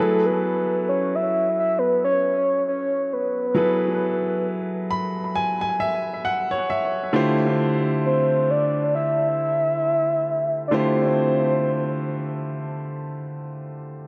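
A soft, octave-layered synth lead carries the melody in this longing, sensual R&B excerpt. Its round, dark tone is filled out by a sub octave and shimmers with chorus, vibrato and analog delay. Beneath it, a clear baby grand piano supplies intimate accompaniment, with audible action noise and long, natural sustain, plus its own analog delay. The piano adds a fill from 4.4 to 7.1 seconds, leading into the harmonic shift from F#m11 to Dm11 at 7.1 seconds, and it keeps playing after the lead drops out at 12.5 seconds. A slow, lightly swung groove and a moderate plate reverb give the echo-heavy mix a lingering atmosphere.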